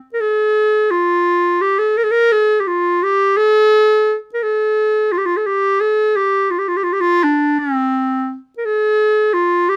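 Passionate and stately, this short excerpt of Arabic music moves in a straight 6/8 as a lone clarinet carries the line from start to finish, staying in its middle register. Played in a classical style, the clarinet sounds clear and close-miked, sitting up front with a light touch of reverb around it.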